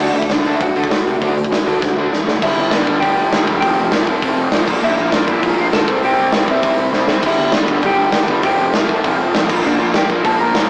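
A rough rehearsal-room recording with light reverb, saturated tone and a small-speaker sound carries this rowdy, upbeat punk rock cut from a longer piece, played in a straight 4/4. A big acoustic rock drum kit sits up front, with bright cymbals, a medium-tuned snare, a punchy kick and hi-hat, and it plays fills at 1.8 and 6.9 seconds. Behind it, a dark, overdriven, double-tracked electric guitar plays a compressed, picked riff low in the mix, while a growly fuzz bass, picked and overdriven with a direct-and-amped edge, holds down the low end. On top, a slightly broken-up, compressed lead guitar carries the melody in a dark, picked tone. After an opening on D, the band shifts at 2.4 seconds into a cycling progression of G5, F5, Bb and C that drives the rest of the passage.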